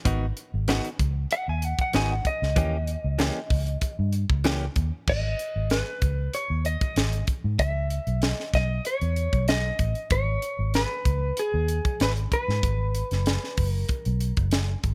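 Soulful and brooding, this straight-eighth soul blues moves in an even 4/4 feel, heard as a cut from a longer piece. A tight funk drum kit with a high-tuned snare, tight kick, hi-hat and crash sits up front in a small, dry room, beside a dark, round, foam-muted fingered bass that carries the low end throughout. A clean, direct-recorded electric guitar with a warm, compressed tone plays stabs from 0.1 to 4.7 seconds, over chords moving from G#m7 to D#7b9. From 1.3 seconds a second clean guitar, brighter and scooped and bathed in lush chorus, takes the melody and carries it through the later section as the harmony shifts through G#m and C#m7. The mix is close and intimate, with little reverb, letting the picked guitars and tight rhythm section speak plainly.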